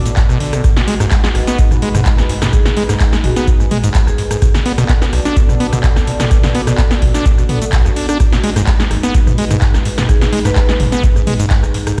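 Trippy, hypnotic acid house at 127 BPM in G# minor pentatonic, cut from a longer piece, where a squelchy, resonant sawtooth acid bass riff with tube saturation, 12-bit grit, tape echo and sidechain pumping rides over a deep, up-front electronic kick and a dry analog drum machine of punchy snare, metallic hats, handclaps, rim clicks, shaker and toms, while a dark, detuned analog pad holds sustained Bm7 and G#m7 chords with chorus and pumping, and an airy, ringing vibraphone melody with tape echo sits in the background from 2.5 to 4.4 seconds and returns briefly at 10.1 seconds, all heard through the stone reverb of a bare room on a big sound system.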